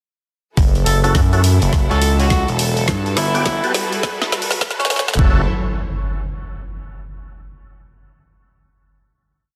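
A gritty, aggressive synth bass sits up front with chopped, saturated phrases in this funky glitch hop piece at 104 BPM in F# phrygian, backed by a layered electronic drum kit with overdrive, a knocking broken kick, toms, a woody snare and bright swung hats. An amplified, overdriven harmonica plays a jazz-style solo with light vibrato and tongue slaps through dub echo, while a tonewheel organ adds sparse, close-voiced stabs with key click and lo-fi sampler grit, and a lush, bowed string section holds sustained chords under sidechain pumping. The piece builds with a drum fill and filter sweep from 0.6 to 5.2 seconds, moving from F#m7 to Gmaj9 and back, as a riser and impact in the background lead into a final chord that rings until 7.5 seconds.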